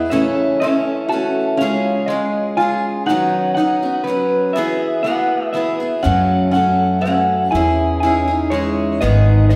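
A resonant recital-hall reverb with a 1.5-second decay surrounds this short excerpt of acoustic folk for a small band, cut from a longer piece and set in F# dorian at 121 BPM in a straight 3/4. The mood is wistful and reflective as the harmony moves from F#m7 through C#, Badd9/D# and Eadd9 before settling on F#m and passing to G#m. Up front, a bright, freshly strung steel-string acoustic guitar carries the picked accompaniment, with a little finger squeak audible. The melody comes from a dark, slightly broken-up electric guitar through a small old amp, fingered and compressed with a lo-fi edge and a tremolo shimmer. Beneath it, a metal-body resonator guitar played with fingerpicks and a slide adds a metallic, nasal second line. After a brief touch at the very start, a woody pizzicato upright bass enters in earnest at 6.1 seconds, warm and up front in the mix.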